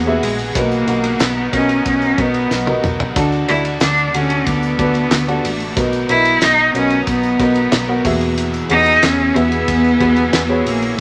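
Piano-driven pop at 92 BPM in 4/4, anthemic and uplifting, where a rich, bowed solo cello with vibrato carries the melody up front over a woody, boxy upright piano whose action noise is audible, moving through Eadd9, Bmaj7 and D. Beneath them sit a dark, foam-muted fingered electric bass and a damped 70s drum kit with a fat snare, tight kick, handclaps, hi-hat, ride and toms that enters at 0.2 s and plays a fill from 2.5 to 3.2 s, joined by a very quiet, jingly tambourine. In the background, a bright, double-tracked overdriven stack guitar plays a picked riff while a lush, detuned sawtooth unison pad with chorus holds sustained chords, all within a moderate studio reverb in this short cut from a longer piece.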